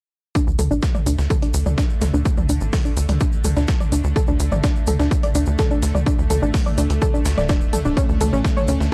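A heavy, overdriven electronic kick sits up front with a tight, punchy sequencer bass, nasal and sawtooth-edged, driving this hypnotic, dark melodic techno excerpt at 126 BPM, the bass pumping to the sidechain. A soft, round pluck plays arpeggios through chorus and tape echo under a filter sweep, while from 1.0 seconds a tense, string-like drone with phaser, vibrato and built-in reverb hangs behind it. A gritty sampler-style breakbeat kit with hi-hat, snare and tambourine, a background techno kit of smooth hats and toms, and a grainy, close tube shaker fill out a dry recording marked by transformer saturation and cassette tape, with the harmony moving from D to A.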